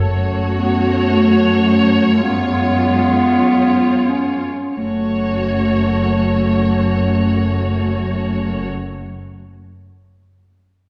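Muted chamber strings open this solemn, elegiac excerpt from a slow romantic orchestral movement in F# minor, with the violins holding a veiled melody on C#5 over a second violin line, a dark viola accompaniment tucked in the background, and cellos and double basses sustaining a bowed F# bass with vibrato. At 0.5 seconds a mellow, distant clarinet enters with its own second line alongside the con sordino strings as the free-time opening slows down through its first 4.8 seconds. The harmony moves from F# minor to C#7 over an F# bass and back, all heard from further back in a concert hall whose reverberant, roomy acoustic softens the ensemble.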